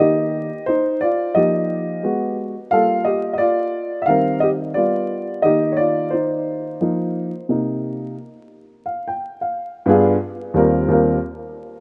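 Swung sixteenths in 4/4 carry this cool, mellow hip hop fragment, cut from a longer piece, where a dark, woody upright piano plays alone from 0.0 to 11.2 seconds, sitting up front in a rough home-demo mix with vinyl crackle and a moderate plate reverb, moving through lush extended chords such as Ebmaj13, Abm7 and Gm9 before a chordless passage at 8.2 seconds and a closing turn from G7b9 to Eb69.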